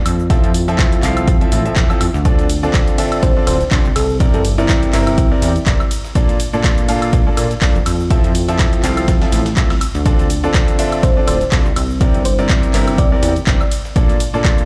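A dry mix carries the air of a big sound system playing in a bare room, framing this joyful, euphoric piano house piece in F major at 123 BPM with a light 16th-note swing. A bright concert grand piano riff with sidechain pumping and delay rides over a punchy electronic kick, a plucky sawtooth analog bass that pumps along with it, a tape-warm analog drum machine of handclaps, hi-hat, ride, shaker and woodblock, and a very quiet, gritty sampler-style kit adding hi-hat and snare, all cycling through Fmaj7, Dm7, C9 and Bbmaj7. A sparkling, bell-like FM electric piano with chorus, tremolo and delay surfaces in the background for short melodic phrases from 3.2 and 11.0 seconds.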